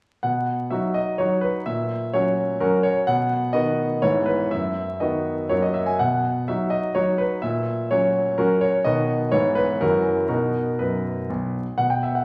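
Through vinyl crackle and the lush reverb of a recital hall, a clear, up-front concert grand piano with a deep, smooth bass and a vintage tone plays a cheerful, playful classical-period sonatina alone in a lilting 3/4 with rubato, moving among simple tonic, subdominant and dominant chords in this brief cut from a longer piece.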